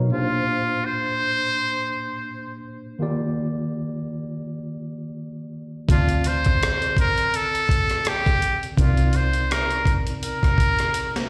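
A muted trumpet carries the melody from the first moment, its metal mute giving a buzzy, thin, brilliant tone with light vibrato and a soft attack, played up front in a jazz solo style with plate reverb and slapback echo. Beneath it, a worn, slightly out-of-tune tine electric piano supplies the chords, lightly overdriven through its built-in speakers and washed in the same plate reverb and slapback echo. This sensual, soulful neo-soul R&B excerpt moves at 83 BPM with a gentle swing, moving through Bb69, Ebmaj9, Dm7 and Cm7 in Bb major. At 5.9 seconds a dark, round, punchy fingered electric bass and a gritty, compressed boom bap sampler-style drum kit arrive together, the kit bringing a thumpy kick, high-tuned snare, rim click and hi-hat, re-recorded in a large room and placed up front. A short drum fill closes the passage at 10.9 seconds, and the whole performance sounds like a live gig heard through a venue's PA with the light reverb of a recital hall.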